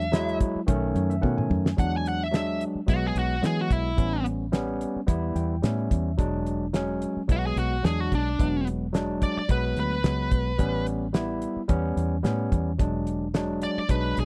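Rollicking and gritty, this dry, close 1970s-style soul blues excerpt moves at 109 BPM in E mixolydian with a straight-eighth feel, as a smooth, bright overdriven lead guitar solos up front through the opening 1.8 seconds before carrying the melody, a barky tine electric piano played through a combo amp adds fills at 0.7 and 5.1 seconds, a dark, round, foam-muted fingered bass anchors the low end, and a cloth-damped, thuddy drum kit with a fat snare, tight kick and rolled-off top drops in a fill at 1.2 seconds over changes moving from E and B7 to E7 and A7.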